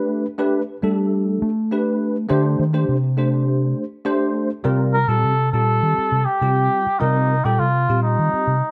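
A straight 4/4 pulse at 102 BPM drives this nocturnal, intense slice of electric jazz fusion in C dorian, cut from a longer piece. A bell-like tine electric piano treated with ensemble chorus sounds chords from the start, and a round, amped fingered electric bass enters at 0.8 s to take a solo through the first half, before a soft, veiled trumpet with cup mute carries the melody from 4.9 s with mellow vibrato. Light reverb and a small room ambience give the production a dark, warm cast.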